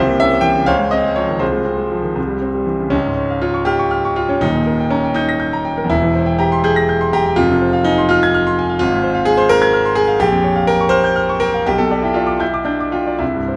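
Passionate and brooding, this romantic classical character piece for solo piano unfolds in a rubato 6/8, its clear, natural grand piano sitting up front through close, detailed microphones and reaching from the deep bass to the high treble, with moderate recital hall reverb around it as a brief opening section gives way at 2.9 seconds to a longer passage that carries on to the cut at 13.6 seconds.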